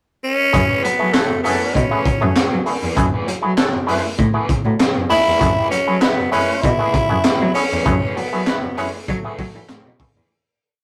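A growling, raspy tenor saxophone opens this driving, funky piece alone with a short pickup, tossing out motif-based call phrases with light vibrato. At 0.5 seconds the band drops in on a single F#m11 chord: a crunchy breakbeat kit lays down a heavy on-the-one funk beat with a punchy kick, high-tuned snare, hi-hat and handclaps, dark and gritty up front. A bowed cello takes the bass role with a rich, syncopated riff anchored on the downbeat, sliding between notes with expressive portamento. An overdriven clav runs through an auto-wah into a two-handed, stringy, twangy groove, while a biting electric guitar sits very quiet underneath with sixteenth-note rhythm and muted scratches. From 1.1 seconds a tight horn section punches in short stabs as a second line, and the whole piece has the rough, saturated feel of a small rehearsal room before fading out from 7.9 seconds.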